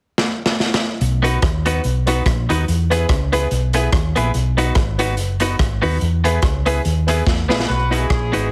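Upbeat and cheerful, this ska excerpt moves at 144 BPM in B major with a light swing, opening on a gritty, saturated garage drum fill before a round, dark hollow-body bass enters at 1.0 seconds to anchor the alternation between B and E. A bright, twangy clean electric guitar and a woody, slightly detuned upright piano with short sustain and slapback echo fill in the accompaniment and stabs, while a second drum fill leads to a clear, distant horn section taking the melody at 7.7 seconds. The whole mix sits in a small room with light reverb and carries a heavily compressed, radio-like sound.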